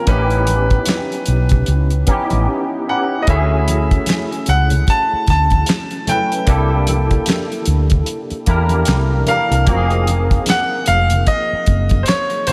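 A slow 75 BPM groove in 4/4 with a 60% swing on the sixteenths sets up this smooth, warm neo-soul and R&B excerpt, cut from a longer piece. The cloth-damped drum kit sounds thuddy and dark, with a fat snare, tight kick, hi-hat and handclaps sitting up front, while very quiet congas add a bright, thin-skinned touch from a small room. A woody, growly fretless electric bass anchors the low end, and a barky tine electric piano, lightly overdriven through a combo amp with ensemble chorus and slapback echo, fills out the accompaniment. Over this, a clear, intimate baby grand piano carries the melody with long sustain, audible action noise and a touch of tape echo. The chords move from A7 through Dmaj9, C7 and Fm7, with a brief break between 2.5 and 3.3 seconds, and a lush hall reverb gives the whole mix a big arena sound.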